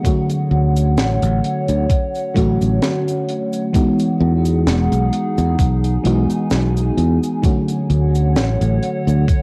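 Up front, a round, soft FM electric piano with phaser, subtle chorus and analog delay carries this faded, nostalgic vaporwave excerpt at 65 BPM, moving from Dmaj7 to Emaj9 and back over a detuned, warbling tape-like pad, a thumpy sampler-style kick, an airy fusion kit with a high-tuned snare, hi-hat and cabasa, and a bright, growly fingered bass with tube saturation entering at 0.5 seconds, all wrapped in small-room cassette ambience.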